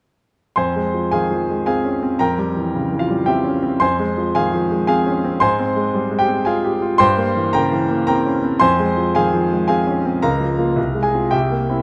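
Classical virtuoso piano study in triple metre, passionate and stormy, played with a flexible rubato feel. A concert grand carries the music alone from 0.6 to 11.8 seconds, ranging from deep bass up into the high treble, with a natural, up-front sound and rich low end. The harmony stays rooted in minor chords over a restless dominant, moving through several inversions before settling back home near the close. Close, detailed microphones capture the instrument clearly, while a moderate recital hall reverb adds a sense of space around it. The passage is cut from a longer piece.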